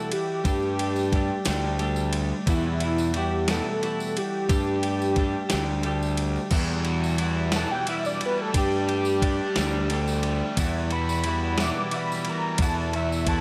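Cool, moody indie rock in a straight 6/8, cut from a longer piece, where a thick, detuned sawtooth unison synth lead solos throughout over a twangy, compressed twelve-string electric guitar riff, a sampler-style 80s drum machine with a thumpy kick and gated-reverb snare, a jingly tambourine in the background and an up-front, punchy fuzz bass, while an overdriven electric guitar with subtle chorus slips into the background at 6.5 seconds as the chords sway between Gsus2 and Emadd9 under light digital ambience.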